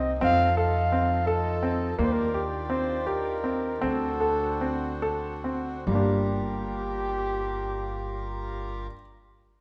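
A moderate scoring-stage reverb frames this pensive, restless contemporary chamber excerpt in G minor and uneven 5/8, where a present, jazz-style flugelhorn with light vibrato carries the melody over a reedy, breathing harmonium, a worn grand piano whose arpeggios carry audible action noise, and an up-front, woody pizzicato upright bass, the tempo slowing between 2.0 and 5.9 seconds as the chords move from F7 through Ebmaj9 and D7 to Gm7.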